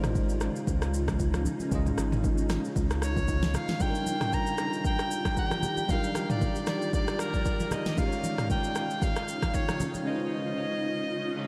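Amapiano at 115 BPM in 4/4 with a gentle sixteenth-note swing, this short cut from a longer piece feels soulful and dreamy, its chords moving from Dbmaj9 to Ebmaj9 and back. A bell-like tine electric piano plays clean, direct accompaniment throughout, while a granular cloud pad holds blurred, evolving sustained chords with sidechain pumping and its own reverb. A deep house drum kit sits up front with a deep kick, fat snare, rim click, shaker and toms, its sound tape-warm and layered, joined from 0.2 s by very quiet, close congas with soft hands on thick, damped skins. A round, dark analog bass anchors the opening, and an edgy soprano saxophone enters at 3.0 s to carry the solo melody with light vibrato and delay, shortly before the bass drops out at 3.6 s. The whole mix is soaked in a huge ambient reverb, and a very quiet reverse cymbal appears at 11.3 s at the very end.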